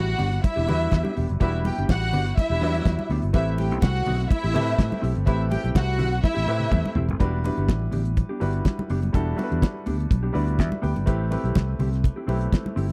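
Lush, dark bowed strings with expressive vibrato open this glamorous, driving disco excerpt in E minor at 124 BPM, alongside a short-sustained baby grand piano and a punchy, up-front fingered bass. A fat-snared, tight-kicked 70s drum kit joins almost at once, with thick-skinned congas and a clean, compressed electric guitar set in the background, all moving over Em7 and Am7 chords. The strings drop out at 6.9 seconds during a drum fill, and the piano takes a fill at 10.1 seconds, all in a dry, close 1970s-style studio sound.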